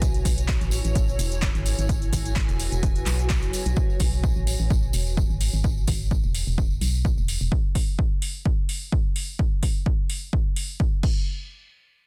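A dense, heavily limited and fairly dry mix opens this energetic, soulful piano house excerpt at 128 BPM with a light 16th-note swing, where a punchy, tape-warm electronic kick sits up front beside a layered house kit of metallic hats, crash, handclaps and shaker, a saturated tambourine runs until 7.5 s, a hollow, organ-like FM bass pumps in the low register over chords moving from B9sus4 through Eadd11, G#m7 and E69, and a bright, blurred granular cloud pad drifts high above with its own reverb and pumping until 3.8 s.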